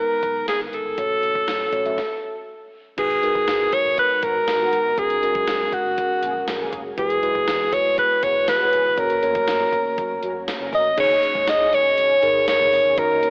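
This is a glossy, romantic slice of 1980s-style pop at 120 BPM in a straight 4/4, cut from a longer piece. A bright alto saxophone carries the melody up front from the start, with light vibrato and scooped notes, while a mellow tine electric piano plays clean accompaniment that sounds as if heard through built-in speakers. A gated 80s digital drum machine with a thumpy kick, overdriven gated-reverb snare, hi-hat, tambourine and crash drives the track, backed by a dark, round, foam-muted fingered electric bass sitting low in the background. Everything stops briefly between 2.0 and 3.0 seconds. From 4.0 seconds a very quiet, ethereal pad holds sustained chords until 11.0 seconds, and from about 4.2 seconds brassy synth stabs with chorus, phaser and filter sweeps join in, all over a progression moving from G#madd9 through Eadd9 to a closing Absus4. The whole mix sits in a lush hall reverb with a homespun cassette, telephone-like character, and the saxophone, electric piano and synth brass carry that tape colouring.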